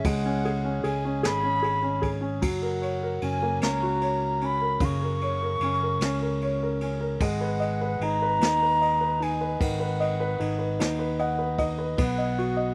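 Recorded dry and outdoors with little reverb, this short excerpt is an aching, melancholic six-eight pop ballad in G# minor at a slow 50 BPM, moving through C#5, F#, G#m7 and B. An airy, distant silver concert flute with a crisp chiff and a slightly unsteady straight tone carries the melody, while an intimate, up-front felt-muted upright piano supplies soft accompaniment; both parts carry a slapback echo. A punchy fingered electric bass and a brushed jazz kit with dark cymbals and a boomy kick sit underneath, and the piano adds a felt fill from 10.8 to 12.0 seconds.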